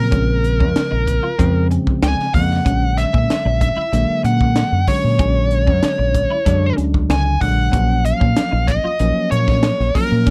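A dark, distorted lead guitar sits up front, carrying a bluesy overdriven melody between Bb4 and Ab5 with a slapback echo trailing its notes. This is a driving, funky slice of electric jazz fusion in Bb minor at 94 BPM in a straight 4/4, cut from a longer piece and running about 10.3 seconds. A bell-like tine electric piano adds bright, direct accompaniment beneath it, while a deep, round fingered bass, amped and dub-weighted, anchors the low end from Bb1 to Bb2. A crisp acoustic drum kit with a punchy kick, high-tuned snare and hi-hat sounds in a small, pumping room, and a compressed clean electric guitar with ensemble chorus drops picked stabs in the background. The harmony moves from Bbm7 to Bb7alt at 2.7 seconds and settles on Ebm7/Bb at 7.7 seconds, and the mix carries little reverb.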